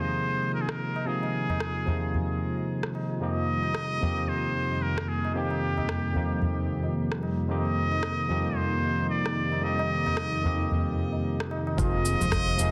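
Organic downtempo with a mystical, meditative air, this excerpt sets a nasal, straight-muted trumpet melody with light vibrato over a barky tine electric piano and a smooth, detuned analog pad under a filter sweep, both pumping, while high-tuned, ringing tabla and a filtered electronic rim click and shaker carry a swung groove, until at 11.8 s a shimmering hammered santur, a growly fretless electric bass and a thumpy electronic kick drum join as the harmony returns to Fm7.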